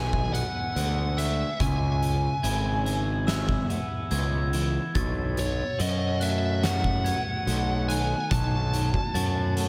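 Hopeful and euphoric, this post-rock excerpt moves at 72 BPM in a straight 4/4, with a fuzzed, distorted lead guitar carrying the melody over chords that shift from E to C#m7 and then to B7 at 5.0 seconds. A bright, twangy twelve-string electric guitar picks delayed arpeggios in the background while a bell-like glockenspiel struck with hard plastic mallets rings out high arpeggios, and an up-front, growly fuzz bass anchors the low end. An oversized, low-tuned acoustic drum kit enters at 0.1 seconds with a boomy kick, fat snare and hi-hat, its pumping big-room sound gritty and saturated, all set in light reverb and small room ambience.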